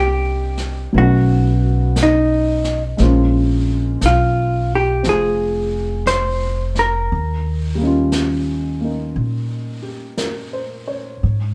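Wistful and intimate, this swung jazz ballad fragment sets a dark, clean, picked melody on a vintage hollow-body guitar, heard up front until 9.8 s, over a baby grand piano whose warm accompaniment carries audible action noise and short sustain, a woody pizzicato upright bass, and a distant, roomy brush kit with a high-tuned snare and hi-hat entering at 0.6 s, all placed a little back in a moderately reverberant studio room.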